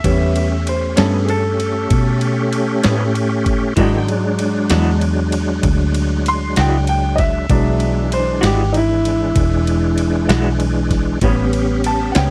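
In a straight 12/8 feel at 64 BPM, this gritty, swaggering slow blues is cut from a longer piece and opens with a clear, woody upright piano soloing over A9 and E9 chords, backed by a reedy, lightly overdriven tonewheel organ with key click, chorus vibrato and a slow rotary speaker, a round, punchy foam-muted electric bass sitting up front, and a compressed sampler-style boom bap kit with a thumpy kick, medium-tuned snare and ride cymbal, while a dark, slightly broken-up picked electric guitar with tremolo joins at 1.0 s, all captured in a dry, close 1970s-style studio sound.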